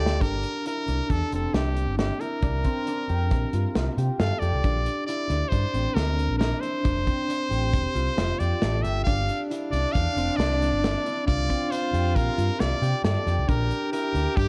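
A brilliant, forceful trumpet carries the melody up front, its pop-style solo marked by vibrato and scooped notes and set in plate reverb. The piece is brooding, intricate progressive band music in an uneven 5/4 metre with a straight feel, cut from a longer piece and opening on a drum fill. Beneath the trumpet, an overdriven fingered electric bass sits punchy and amped near the front, while a modern studio kit with a tight kick and medium-tuned snare works hi-hat, kick and snare in a studio room. A concert harp adds mellow, thumb-plucked arpeggios that ring over chords moving from Gm7 through C9sus4, Bbmaj7 and Fmaj7 to G5, then back to C9sus4. At 9.1 seconds a bright alto saxophone joins with a second line, also with vibrato and plate reverb. The whole recording has light reverb and a worn cassette-tape quality, with warbly pitch drift.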